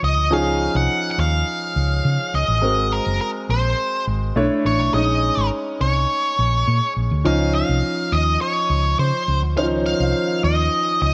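Polished 1980s jazz-funk pop with a glossy, upbeat mood at 104 BPM in Db major, this short cut from a longer piece sets a dark, fuzzy octave-fuzz lead guitar melody up front over a clear concert grand piano with deep bass and long sustain bathed in lush chorus, while a round, hollow-body short-scale fingered electric bass anchors rich chords like Dbadd9, Ab9 and Dbmaj9 in light studio reverb.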